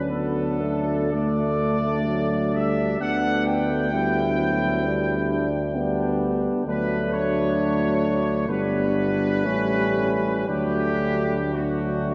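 A clear trumpet section carries the melody with light vibrato, sounding distant and roomy, in this tender, lyrical, hymn-like classical piece for brass band in D major, moving with rubato in 4/4 at 55-67 BPM. Beneath it, a mellow flugelhorn sings a second line, a vintage-toned euphonium with a soft attack and a smooth-topped trombone with vibrato, set in the background, fill out the accompaniment, and a present tuba anchors the bass. A long cathedral reverb and a dark production surround the chords as they move from D through G and A7 back to D, in a fragment cut from a longer piece.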